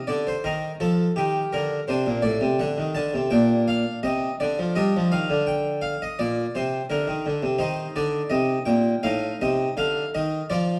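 Grave and introspective, this baroque-style suite movement in G minor unfolds at 84 BPM in 4/4 with a rubato feel. A solo harpsichord in the Flemish style carries the whole excerpt from 0.0 to 10.8 seconds, spanning A2 to A5 with an airy, plucked, brilliant tone and the full sound of three sets of strings, placed up front. The harmony moves from Cm through D5 and Bb69, returns to Cm at 7.6 seconds, and reaches Adim at 9.0 seconds before the cut ends. A wet recital hall reverb with a 1.5-second decay surrounds the instrument. The production is dark and warm, with vinyl crackle adding an aged patina to this fragment of a longer piece.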